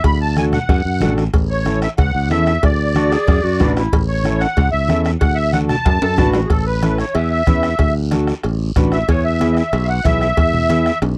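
Cumbia at a brisk 186 BPM in A major, sunny and danceable, this cut from a longer piece sets a reedy, shimmering musette accordion up front on the melody, which turns into a solo at 6.5 seconds. A growly, bright fingered electric bass sits up front alongside a mellow, overdriven combo organ with light vibrato, while a soft-beater bombo, low-tuned congas in the background, ringing metal-shell cowbell and timbales, and a raspy guiro drive the groove, with a drum fill at 5.9 seconds. A clear clarinet adds brief jazz-style phrases with scooped notes, and the sound is dry and close, like a 1970s studio recording.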